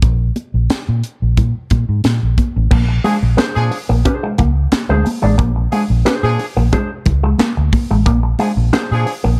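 Funk with a strutting, funky mood, opening on a round, foam-muted vintage electric bass that sits up front with a crisp fusion drum kit (punchy kick, high-tuned snare, hi-hat, handclaps and crash) and very quiet, close, high-tuned congas played with soft hands. At 2.7 s the music settles on a Bb9 chord as a twangy, scooped electric guitar enters with an envelope filter and phaser to play the riff, joined at 3.0 s by a tight, clear horn section with light vibrato on a second line and at 3.4 s by a clean, compressed, mellow electric guitar in accompaniment. The warm studio ambience carries light reverb within a dark overall production, and this is a short cut from a longer piece.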